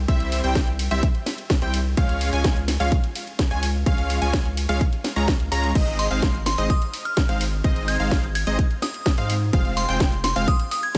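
This festival progressive house excerpt feels euphoric and triumphant, moving over a straight 4/4 pulse as the harmony shifts from C to Db, then Ab and Fm. A punchy, up-front electronic kick anchors the mix alongside a house kit with a cracking snare, hi-hat, ride and crash, both layered and tape-kissed with the character of a small room. Beneath them a deep, saturated sine sub bass pumps with sidechain, while a huge, detuned supersaw riff, dense and compressed with an airy noise layer and vibrato, breathes through sidechain pumping and tape echo. A catchy, bright plucky unison lead spins arpeggios high above, dressed in lush chorus and echo and shaped by a filter sweep. At 6.0 seconds a glassy, crystalline FM bell melody enters in the top register, its decaying tones colored by chorus, phaser and gritty 12-bit sampler texture, and the whole sits dry with little reverb.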